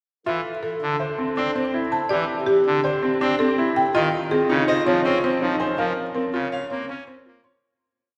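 A wet cathedral reverb fills this short minimalist classical piece, recorded in a church or concert hall, with a propulsive, bright character at 163 BPM in a straight 5/4, in F major. A woody, buzzing marimba struck with medium hard mallets carries the melody as a repeated short cell, its dry, boxy tone set against a brilliant, up-front grand piano whose arpeggios bring audible action noise close to the ear. A pipe organ on its trumpet stop supplies a brassy accompaniment with baroque voicing and a noticeable chiff, while a distant French horn, in the background, holds swelling notes with light vibrato as a second line. A single bowed violin, very quiet and far off, adds expressive arpeggios with vibrato and portamento from 4.7 to 6.7 seconds. The harmony moves from Fmaj7 through a rootless A7sus4 and Dbmaj7 to Bbm, and the whole piece fades out from 5.8 seconds, ending at 7.6 seconds.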